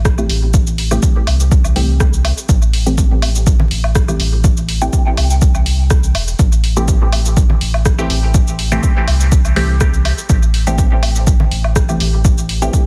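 A lightly swung 4/4 groove drives this meditative, hazy dub techno excerpt, anchored by an overdriven, punchy electronic kick and a round, soft sub bass with tube saturation and sidechain pumping, joined by dry analog drum-machine hi-hat, rim click and shaker, layered woodblock and congas treated with dub echo, and a dark, detuned sawtooth chord stab plucking short hits on a single Am7 chord through phaser and echo, the whole mix carrying vinyl crackle in a dense, heavily limited master.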